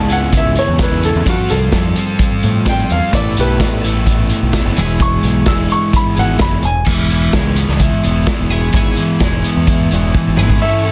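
A dry, dense and heavily limited mix opens this carefree, wistful indie rock excerpt at 128 BPM in 4/4, where a woody upright piano carries a solo melody with slapback echo from 0.0 to 6.9 seconds over chords moving from C#m7 through Fadd9 and Asus2 to E. Beneath it, a dark, overdriven electric guitar and a bright, chorused twelve-string electric guitar play riffs, while a growling, overdriven fingered bass and an up-front vintage kit with a punchy kick, dark cymbals and a pumping small-room sound drive the groove. A drum fill arrives at 10.2 seconds, and at 10.6 seconds a clear tonewheel organ with slow rotary speaker adds sustained chords in the background as the piano briefly returns.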